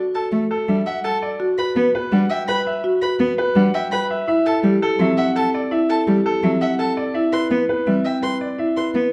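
Meditative and hypnotic, this short minimalist classical excerpt cut from a longer piece moves in a straight 4/4 pulse built on repeating patterns. A bright concert grand piano carries the melody up front, its brilliant tone ringing with long sustain and an open, deep-bassed character. Beneath it, a marimba played with medium mallets circles through mid-forward arpeggios, while a single bowed violin adds its own arpeggios high above, smooth and even with vibrato but set at a distance. A lone bowed cello supplies the accompaniment up front, focused and rich with vibrato. The harmony drifts through rootless suspended and seventh chords before settling on Cmaj7 at 7.2 seconds, all bathed in a wet recital hall reverb within a dark, warm production.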